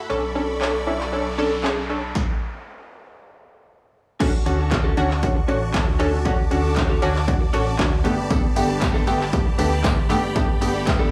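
An overdriven, up-front analog drum machine with punchy kick and snare drives this upbeat, carefree dance-pop excerpt. Beneath it sit a dark, round fretless bass, bright detuned sawtooth chord stabs and huge, lush phased supersaw chords, all three pumping with sidechain, moving from Bm9 through Dmaj7 to Gadd9. An electronic noise sweep appears near the start, a clean, chorused guitar riff enters in the background at 4.2 seconds, and a very quiet, jingly tambourine joins at 8.3 seconds, all under light reverb.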